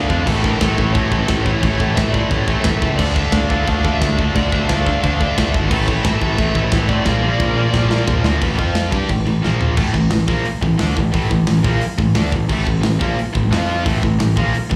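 Dark and aggressive heavy metal cut from a longer piece, heard as a live gig through a club PA, where a dark high-gain lead guitar carries the melody over a very quiet second lead line and a hollow, chiffy pipe organ clarinet stop holding sustained chords until 8.4 seconds. Meanwhile three bright distorted rhythm guitars churn riffs: two sit in the background and a double-tracked third is very quiet. They play beneath a growly, punchy picked bass and an up-front, big-room drum kit with china and crash cymbals whose fills land at 7.1 and 9.4 seconds.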